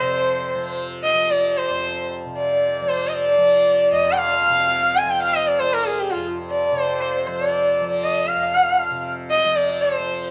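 A solemn, introspective Hindustani classical passage opens with a clear, focused bowed sarangi up front, its gliding portamento, light vibrato and ringing sympathetic strings carrying the melody over a softly plucked, buzzing, shimmering tanpura drone and a reedy, breathing pedal harmonium that plays a second line in the background with a boxy, small-room character. Cut from a longer piece, it moves in 4/4 with a straight feel at around 116 BPM and gradually speeds up across its 10.3 seconds. A moderate studio reverb gives the sound a little space.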